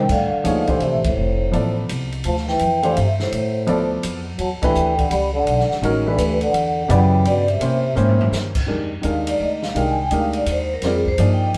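A ringing vibraphone melody, a veiled, breathy cup-muted trombone line and a woody, thumpy upright bass open this searching, spiritual modal jazz excerpt in a swinging three, joined almost at once by an open drum kit with dark cymbals and a boomy kick and by an intimate baby grand piano with audible action noise, all set in a live, reverberant room, with the band striking accents together before the trombone drops out at 8.3 seconds and the vibraphone takes a solo from 8.7 seconds.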